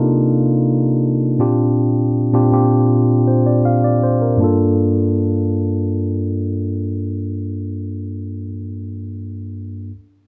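A mellow, clean tine electric piano plays alone and up front through this short, moody late-night R&B excerpt in G minor at a straight, unhurried 80 BPM in 4/4, moving from Cm11 to Bb69 under a low-pass filter sweep before settling on Gm9 at 4.4 seconds, all set in light digital reverb.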